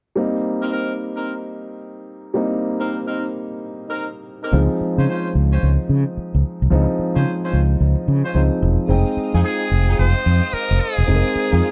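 R&B in F minor at 110 BPM with a swung 16th-note feel, this bouncy, punchy excerpt from a longer piece moves from Cm7 to Dbmaj7 to Fm7 in a dry, close 1970s-style studio sound. A concert grand piano with deep bass sits up front as accompaniment, while a vintage jazz-style horn section adds vibrato-tinged stabs under slapback echo, and a fretless electric bass, direct and amped, enters prominently at 4.5 seconds. At 8.9 seconds a dark, lush bowed string section brings sustained chords in the background, and from 9.4 seconds a brilliant, buzzy trumpet with metal mute carries a close-miked solo melody up front, also with slapback echo.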